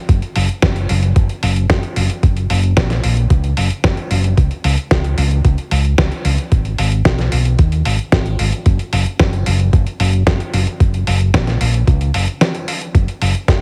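A thumpy, gritty electronic kick drum sits up front through this italo disco excerpt, sampler-style at its natural pitch, compressed and lifted by studio reverb. Beside it, a dusty soul sampler-style kit adds hi-hat and a medium-tuned snare, both high-pass filtered and placed in studio reverb, with a tape-aged, squeezed character that keeps them close to the listener. A fingered electric bass, amped, round and punchy, fills the low end between F#1 and D#2, playing from 0.1 to 13.6 seconds alongside the drums. The straight 4/4 feel carries a melodramatic, nostalgic mood, and a brief break arrives at 12.4 seconds. The overall mix has light reverb and a heavily compressed, radio-like sound shaped by multiband compression.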